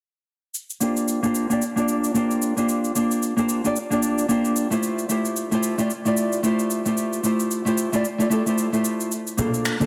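A swung 16th-note groove at 112 BPM in 4/4 begins at 0.5 seconds with electronic cabasa and finger snaps, their produced, small-room sound roughened by soft clipping, and at 0.8 seconds a warm, thumb-plucked, up-front nylon-string guitar enters through a low-pass filter and tape echo over C9sus4, Fmaj9 and Bbmaj9 chords, while distant, hard-handed congas arrive at 9.4 seconds in this relaxed, sunny sunset chillout excerpt, tuned to A4 = 438 Hz and set in a lush 2.4-second hall reverb with a dense, heavily limited master.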